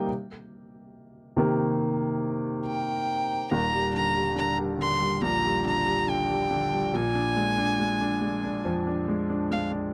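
A straight 4/4 pulse at 70 BPM carries this tender, emotional pop fragment in Eb major, cut from a longer piece. A clear grand piano opens alone as the accompaniment, its polished tone and long sustain sitting up front with audible action noise that lends an intimate, close feel. A single bowed violin enters at 2.7 s to carry the melody high in its register, its smooth, even tone shaded with vibrato and a slightly boxy character, and touched by tape echo. The harmony moves from Cm7 to Ebmaj7 as the second section begins at 3.5 s, then settles on Bb7. The sound is dry and close, like a 1970s studio recording, with only light reverb around the two instruments.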